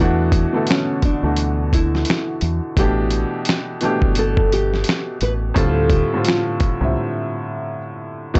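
Nostalgic and melancholic, this short lo-fi hip hop excerpt moves at 86 BPM in 4/4 with a swung sixteenth-note feel, passing from E5 to A5 and then to Dm7. A nylon-string guitar carries the melody with a full-bodied, fingerpicked classical tone, softened by a low-pass filter, and stops at 7.6 seconds. Beneath it, an intimate upright piano with woody character and audible action noise sits up front in the accompaniment, also filtered. A deep, round dub bass, fingered and punchy with tube saturation, anchors the low end, while a dusty sampler-style kit enters at 0.3 seconds with finger snaps, hi-hat, a thumpy kick and a fat snare, compressed and overdriven to a gritty edge. The whole piece has a dry hardware sound with transformer saturation, light reverb and a dark top end, closing on a break from 7.0 seconds.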